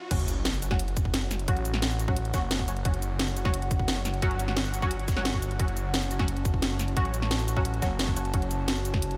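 Tense and mechanical, this dark technical drum and bass excerpt opens straight into a drop, with a very quiet electronic riser and sub drop marking the impact in the first 1.5 seconds. A tight, overdriven electronic kick and an up-front layered kit with a cracking snare, bright hats, shaker and crash drive the straight 4/4 groove, the kit's hats, cymbals, snare and percussion each shaped by low-pass filtering and studio reverb. Underneath, a thick, detuned unison saw bass sits up front with chorus and saturation, while a growling FM bass cuts in from 1.5 to 2.8 seconds and again from 7.0 to 8.3 seconds. Muted, deep dub chord stabs with a filter sweep, ensemble chorus and tape echo punctuate the mix, and a warbling, lo-fi, nostalgic pad drifts in the background from 0.7 seconds with sidechain pumping and its own reverb. The whole mix is set in a light reverb.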